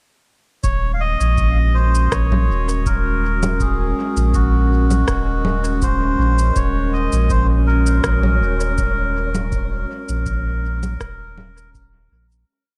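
Deep and spacious, this short ambient dub piece settles into an 81 BPM groove in Eb dorian, where a reedy, nasal melodica wanders freely over a warbling, nostalgic pad of slowly shifting chords with chorus and reverb, all resting on a round, up-front sub bass line. A soft, tape-warm electronic kick sits in the background beside a sparse, echoing beat of shaker, rim click and low conga. At 7.5 seconds an airy, wind-like tuned noise layer holds a single dark high note as the piece fades out from 8.5 seconds to its end at 12.5 seconds.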